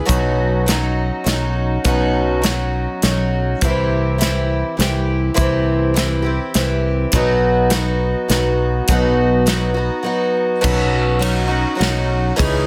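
A shimmering, octave-doubled twelve-string acoustic guitar rings up front over a growly fingered electric bass and an airy country drum kit with a punchy kick, carrying this open-road folk and heartland rock excerpt in a straight 3/4 at 102 BPM through Badd9, C and B chords under light reverb.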